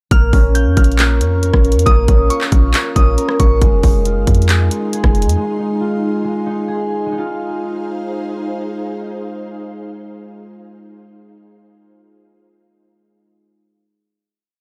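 A dark, close-sounding production with little reverb frames this short, hard-hitting trap piece, whose half-time beat carries a menacing mood. A ringing concert harp, plucked with the thumb and set up front, loops a patterned eighth-note arpeggio with digital delay from start to finish, while a glassy FM synth bell with chorus and tremolo adds a sparse, warbling counter-melody that repeats like a sample. An ethereal pad, detuned and soaked in ensemble chorus and built-in reverb, enters at 1.2 seconds and holds slow-blooming chords underneath. The electronic trap kit pairs a hard-clipped kick with bright hi-hats in fast rolls, plus handclaps and rim clicks, as a clean, boomy 808 bass follows the kick with long sub notes and pitch slides. Drums and bass drop out at 5.4 seconds, and from 7.1 seconds the harp and pad ring out over a final chord.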